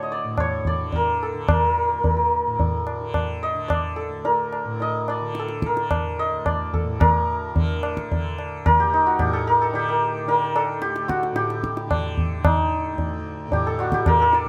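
Heard in a small room with moderate reverb, this radiant, devotional Hindustani classical excerpt in raga bhairav on D moves in 5/4 at 110 BPM and speeds up throughout, with a hammered, shimmering santur carrying the melody up front through plate reverb, a softly plucked, buzzing tanpura holding a low drone beneath, and a high-tuned, ringing, close and dry tabla joining at 0.4 s.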